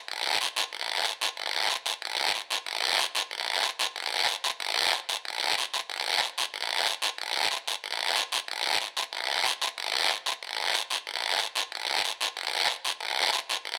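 A lone guiro opens this short latin cut from a longer piece, entering at 0.1 s and carrying the whole recording on its own until 13.8 s. The mood is fiery and danceable, driven by a brisk tempo of 186 BPM in 4/4 with a straight feel. The guiro's raspy, acoustic tone sits up front, close and dry, captured by close, detailed microphones that bring out every scrape. A light reverb gives the room a touch of air around the instrument. The piece shifts into a new section at 9.1 s and runs through to the end of the clip.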